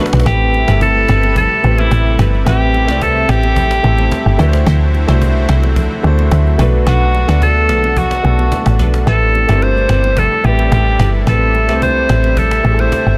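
A straight 4/4 amapiano groove at 109 BPM opens on a drum fill, with a punchy, up-front log drum bass driving beneath a faint cajon and very quiet congas and bongos, setting a deep, hypnotic mood in A dorian. A bright, vintage alto saxophone carries the melody from 0.3 seconds with tape echo, over a warm grand piano accompaniment with short sustain, a lush, detuned unison pad holding chorused chords in the background, and glassy wavetable pluck stabs with chorus and tape echo that stop at 12.2 seconds. The harmony moves through Am9, D9 and Bm7 before returning to Am9 in this dense, heavily limited excerpt cut from a longer piece.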